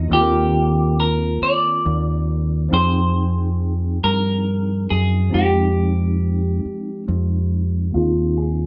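A clean, picked semi-hollow electric guitar sits up front with a hollow-body warmth, carrying a sensual, tender melody over a slow six-eight R&B groove at 46 BPM, moving from Eb6/9 to Fm9 and reaching Bb9sus4 at 7.9 seconds in this short excerpt cut from a longer piece. Beneath it, a worn, slightly out-of-tune tine electric piano plays clean accompaniment through its built-in speakers, while a deep dub fingered electric bass, dark, round and amped, anchors the low end up front. The band plays live in one room with moderate studio reverb and a low-pass filter softening the overall sound.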